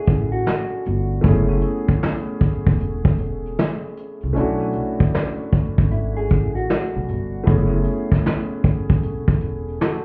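Lo-fi hip hop with a hazy, nostalgic swing, this excerpt sets a soft, felt-muted upright piano with cassette-tape coloring and audible action noise over thumpy, woody pizzicato upright bass and an up-front brushed drum kit carrying 12-bit sampler grit, while a dark, clean, fingered electric guitar drifts through analog delay in brief phrases at 0.0 and 5.9 seconds, and the mix sounds muffled as if through a wall amid club reverb and vinyl crackle.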